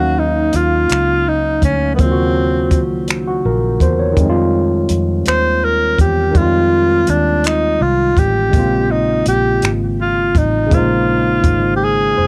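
A slow, straight six-eight sway sets up this sultry, yearning R&B fragment, cut from a longer piece and recorded dry at home on cassette. A breathy tenor saxophone carries the melody up front with vibrato, scooped notes and a whispered, intimate tone, over a bright, barky tine electric piano run through overdrive, lush chorus and cassette tape that moves through Ebm9, Fm9 and Bbm9. A foam-muted, punchy fingered electric bass anchors the low end, while a compact cocktail kit of finger snaps, hi-hat and kick drum plays from 0.5 to 11.6 seconds.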